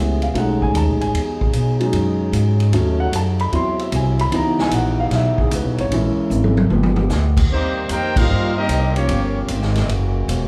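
Heard from a little further back in a moderately reverberant large studio, this swinging, brassy big-band jazz fragment opens with a woody, polished upright piano featured up front over a thumpy pizzicato upright bass on gut strings, a distant, roomy drum kit with a boomy kick and rolled-off top, and bright trombone chords sustained in the background. After a drum fill, the piano stops at 7.0 seconds, and a clear trumpet section with light vibrato takes the melody from 7.5 seconds while a close-miked trombone section plays a second line alongside it, with a band accent landing at 8.1 seconds. Rich extended and altered chords, among them major thirteenths, half-diminished sevenths and a flat-nine dominant, color the harmony of this passage cut from a longer piece.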